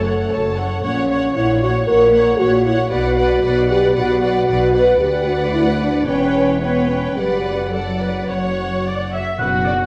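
Bowed strings and a dark French horn section open together in this dramatic, stormy classical passage in B minor, moving with rubato at around 105-118 BPM, as lush violins with soft attacks carry the vibrato-laden melody and a second line over rich violas, cellos and double basses while the tight horns hold sustained chords in a reverberant scoring-stage space, before a distant, roomy oboe and round, soft-mallet timpani enter at 9.4 s.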